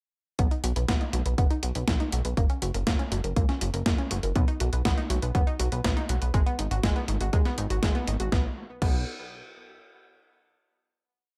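At 0.4 seconds this short, playful italo disco piece opens with all its parts at once: a punchy, layered electronic kick in a four-on-the-floor pattern sits up front, and a glossy, nasal chorused synth bass pushes a sequenced sixteenth-note line with a fast attack and tube saturation. A clean 12-bit drum machine adds closed hi-hat, a medium-tuned snare and crash in a disco machine beat, its sampler-style sound overdriven and treated with gated reverb, as if re-recorded in a small room. Above them, a round, detuned analog pluck plays a bright four-step arpeggiated sequence with chorus and digital delay, and a filter sweep shapes its tone throughout the verse. The harmony moves from B to F# and back to B before landing on G#m7, giving the groove a playful, danceable lift. The mix is dry and close, and the parts stop around 9.0 seconds, leaving a brief closing tail.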